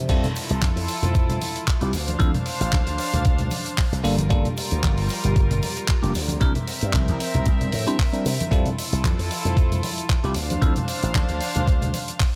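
Nu-disco at 114 BPM with a lightly swung sixteenth feel, this sensual, sleek excerpt cycles through Fmaj7, Dm7, Gm7 and C7 over an up-front, thumpy electronic kick, a dry, damped 70s drum kit with crash cymbal, handclaps and hi-hat, and distant cabasa and congas, while a growly, punchy slap bass through an envelope filter drives underneath, a barky, bell-like tine electric piano with phaser, delay and sidechain pumping adds accompaniment until 10.7 seconds, and a reedy, smooth-topped studio string section with gut-string tone holds sustained, pumping chords, all set in a small room.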